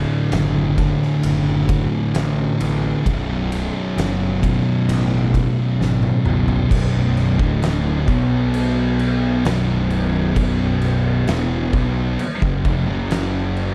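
Heavy and ominous, this stoner and doom metal excerpt crawls at 66 BPM in B minor, with two thick fuzz guitars riffing in the background, one dark and one warm, beneath an up-front, growly overdriven picked bass, while an oversized low-tuned acoustic kit with a fat snare, punchy kick, crashes, ride and toms enters at 0.3 seconds in a bright, pumping stone room and plays a fill from 5.8 seconds into the second section, all set in a dark production with light reverb.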